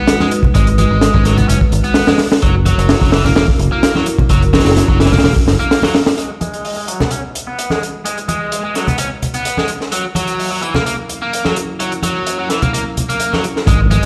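Breakbeat at 128 BPM in G# minor with a swaggering, gritty mood, where an up-front, saturated breakbeat kit with a punchy kick and high-tuned snare drives under bright, thin-skinned congas played with soft hands, a biting overdriven guitar riff with tube saturation and digital delay, a deep, detuned analog pad with chorus, sampler grit and sidechain pumping sitting moodily in the background over G#m7 and F#7 chords, and a round, direct picked electric bass that plays from 0.6 to 5.5 seconds before returning briefly at the end, while filter sweeps on the guitar and pad run from 6.2 seconds and a very quiet electronic impact lands at 13.8 seconds in a large, reverberant room.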